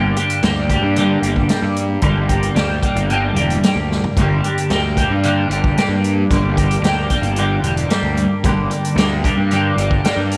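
Psychedelic rock in G minor at 112 BPM, dark and hypnotic, built on a double-tracked clean electric guitar riff with phaser, its picked tone dark and scooped, over a punchy fuzz-overdriven picked bass and an up-front vintage drum kit with a rolled-off top, hi-hat, snare, kick and toms, entering at 0.2 seconds and playing a fill at 3.9 seconds, all set in light reverb in this brief excerpt cut from a longer piece.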